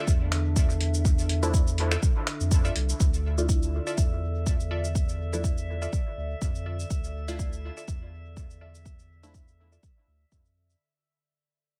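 The mix is dry and close, with a tape-warm, layered electronic kick sitting up front, yet the mood is hypnotic and cavernous. This is a dub techno cut from a longer piece, moving at 123 BPM in 4/4 with a light swing on the sixteenths, in D minor and opening on a Dmadd9 chord. A deep, round sine sub bass and a warbling, nostalgic pad built from square, triangle and wave-folded tones both pump against the kick. The pad carries its own chorus and reverb. Two chord stabs share the middle register. One is a muted, dark sawtooth stab with a moving notch and phaser, and the other is a crisp, bright, detuned wavetable riff, both thrown into dub echo. A muffled, pitched-down sampler kit of cabasa, finger snaps and hi-hat, re-recorded in a small room and sent through dub echo, adds grain. The whole piece begins a fade-out at 3.0 seconds that runs to 10.8 seconds, and a calm, glassy texture of drifting overtones joins shortly after, at 3.2 seconds.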